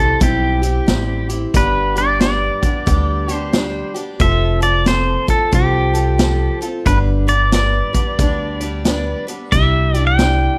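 A pedal steel guitar, a picked acoustic archtop guitar and an upright bass open this heartfelt, easygoing honky-tonk and classic country excerpt together, with a vintage drum kit joining at 0.2 seconds. The tempo is an unhurried 90 BPM in 4/4 with a gentle swing on the eighth notes, and the tuning sits at A4 = 437 Hz. Up front, the clean, compressed pedal steel carries the melody between G4 and G5, played with fingerpicks and slide, using volume swells and a slapback echo. The archtop supplies bright, boxy picked accompaniment with audible finger squeak, while the upright bass gives a woody, thumpy pizzicato low end from its gut strings, and the drums add hi-hat, a punchy kick and a medium-tuned snare with a rolled-off top. The chords move from C to G, F, back to G, and settle on Cadd9 at 9.5 seconds. Close, detailed microphones and light reverb give the recording a warm, intimate sound.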